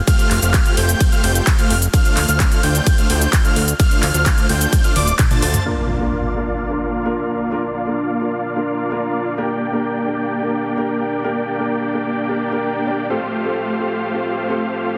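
Festival progressive house at 129 BPM, euphoric and powerful, opening on a full drop where an overdriven, punchy kick and a metallic, layered dance kit of handclaps, hats, ride, shaker and toms drive a fat, nasal analog bass, while a bright, wave-folded unison lead spins lush chorused arpeggios over a huge, detuned supersaw riff that pumps against the kick. A drum fill closes the drop, and at 5.7 seconds an electronic impact hits as the drums, bass and lead fall away, leaving the filtered supersaw beside a dark, mellow grand piano that carries the chords through to 15.0 seconds. The dense, heavily limited mix sits in a moderate scoring-stage reverb, with delay trailing the lead, supersaw and piano.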